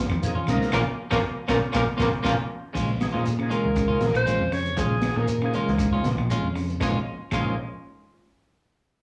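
Afrobeat at 118 BPM in Bb minor, driving and defiant, with a light sixteenth-note swing, heard as a live club gig through the venue's PA and cut from a longer piece. A crunchy breakbeat drum kit with a punchy kick, dark cymbals and a saturated, rolled-off top anchors the groove, joined by a round, amped fingered bass up front, a grainy shekere, woody claves far in the background and very quiet, damped congas. A twangy guitar at the edge of break-up picks low arpeggios in the background, while a clean electric guitar adds picked stabs and an overdriven tonewheel organ fills the middle with thick, gritty accompaniment, key click and a slow rotary speaker with chorus vibrato. At 0.7 seconds a breathy, punchy alto saxophone takes the melody up front, shadowed until 2.3 seconds by a buzzy, metal-muted trombone holding Bb3 and a barely audible bass trombone. A band accent runs through the opening passage, capped by a drum fill leading into the move from Bbm to Bbm7 at 2.8 seconds, and the saxophone drops out at 5.9 seconds. 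Slapback echo colours most parts, set in a small room ambience with club reverb.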